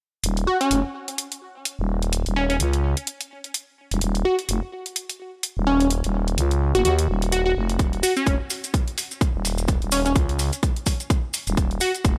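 A swung 127 BPM groove in 4/4 drives this bouncy, gritty bass house cut in Eb minor, where a growling, thick FM bass pumps with sidechain under tape-warm electronic hi-hats, a catchy, detuned unison lead carries the melody with vibrato, a filter sweep and tape echo, and from 7.8 seconds a punchy, layered electronic kick and grainy, mellow maracas join in a dry mix.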